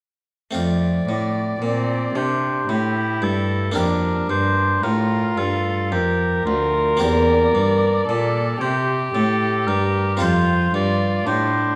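In a straight, unhurried 3/4 at 56 BPM, this baroque-style sonata movement in F major has a flowing, dance-like lilt, and it is cut from a longer piece. At 0.5 s the oboe takes the melody with a warm tone, light vibrato and a distant, roomy classical placement. The harpsichord accompanies from the same moment with a bright, plucked, Italian-style sound on one set of strings, while a rich, close cello anchors the bass. At 1.6 s a dark, nasal violin enters with a second line, reedy and up front. The violin and cello share a bowed, gut-string period character, and all four parts continue to 11.8 s. The harmony moves from F through Gm7/F and C7/E before settling back on F, all held in a wet recital hall reverb with a 1.8 s decay.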